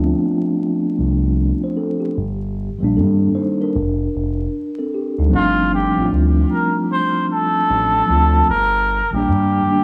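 A swung 76 BPM lo-fi hip hop groove in 4/4 carries this melancholic, hazy excerpt, where a mellow tine electric piano with cassette tape coloring and a dark, nasal synth bass gliding through portamento under tube saturation play from the start and continue as a veiled, cup-muted trumpet with vibrato and tape echo takes the solo melody at 5.4 seconds over gritty, vinyl-crackled small-room ambience.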